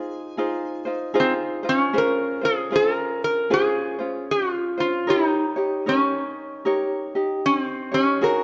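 A lap resonator guitar and a ukulele begin together in this short Hawaiian fragment, cut from a longer piece, with the guitar carrying the melody and the ukulele accompanying beneath it. The mood is relaxed and languid, set at 76 BPM in 4/4 with a gentle swing on the eighth notes, in D-flat major. The slide guitar, played with fingerpicks, has a metallic, nasal voice and sits up front, ranging from C4 to Ab5. The fingerpicked ukulele is bright and light, also close in the mix, and slightly quieter than the lead. The harmony opens on Ab6, shifts to Dbmaj7 at 1.9 seconds and reaches Eb7 at 5.1 seconds. A moderate scoring-stage reverb gives the pair some space, and the production is dark and warm, with its top end rolled off.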